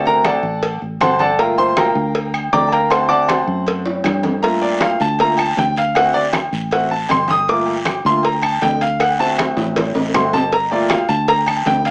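A driving, passionate salsa groove at 158 BPM in G minor, cut from a longer piece, where an up-front, clear upright piano with woody tone and audible action noise solos over a D7 to Gm7 vamp, backed by a dark, foam-muted fingered electric bass, ringing background congas, distant metal-shell agogo bells and timbales, woody claves, and a low-tuned cowbell played with soft hands, while a dry, raspy guiro joins at 4.4 s, with drum fills breaking in twice, all set in moderate studio reverb with a small-speaker sound.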